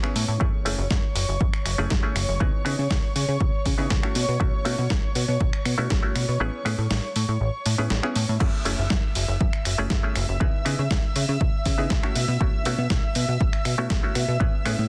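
A muted, nasal clav with overdrive and phaser, intimate dark sul tasto strings and a gritty, sampler-style soul kit of finger snaps, hi-hat, snare and crash open this sensual, funky filtered disco house piece at 120 BPM, joined at 0.2 seconds by a plucky, up-front sawtooth bass and moments later by a punchy, tape-warm electronic kick that drops out between 6.4 and 8.4 seconds, while the clav, strings and bass pump under sidechain and low-pass filtering over an F#m9, C#m7, B7sus4 and Amaj7 progression in a dry, dense and heavily limited mix.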